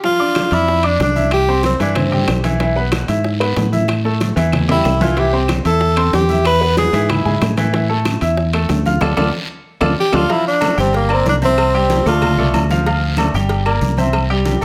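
A clear, natural baby grand piano opens this driving, fiery salsa excerpt, its short-sustain chords up front over a bed of Latin percussion: bright, damped congas and ringing metal-shell timbales with agogo bells sit in the background, while low-tuned, round bongos and cowbell stay close, dry and very quiet. A raspy guiro scrapes close by, and woody claves sound distant, as if from a large room. Almost at once a dark, amped fingered electric bass moves up front. A breathy tenor saxophone carries the melody in three short solo phrases, pop-styled with vibrato and a clear tone. A drum fill arrives at 4.7 seconds, and a band accent with another fill at 9.0 seconds leads into a new section at 10.3 seconds, all under a light reverb.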